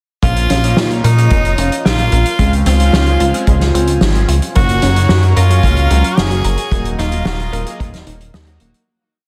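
A straight 4/4 synthwave groove at 111 BPM rides on a punchy, roomy kick and a soft-mallet kit with an 80s machine backbeat of snare and closed hat, while a glossy, nasal chorused synth bass drives eighth notes up front through a moody, nocturnal Bb minor verse moving from Bbm to Dbmaj7, Gb and Ebm. A raspy, gritty tenor saxophone with light vibrato and tape echo plays a forceful repeating riff melody, doubled an octave higher by a very quiet, vintage string machine of violins, until both stop at 7.7 s. Behind them sit a shimmering chorused pulse-width pad with sidechain pumping, a round, detuned analog pluck running an 8-step arpeggio through digital delay, and a chorused polysynth playing evolving dotted-rhythm stabs, all in a recital hall reverb and a dense, heavily limited master that fades out from 6.0 s.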